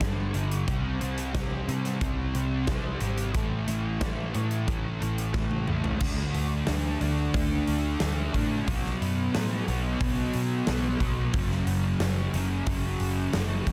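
Blissful and wistful, this shoegaze and dream pop rock fragment, cut from a longer piece, rides a straight 4/4 feel as an up-front, double-tracked fuzz guitar riff, thickened with analog chorus, plays over a dark, round, foam-muted electric bass and a huge arena kit with a punchy kick and medium-tuned snare. A drum fill at 5.3 seconds carries the music into a second section at 6.0 seconds, where the power-chord progression moves on from D5 through B5 to F#5. The dense, heavily limited master sits in a small room ambience.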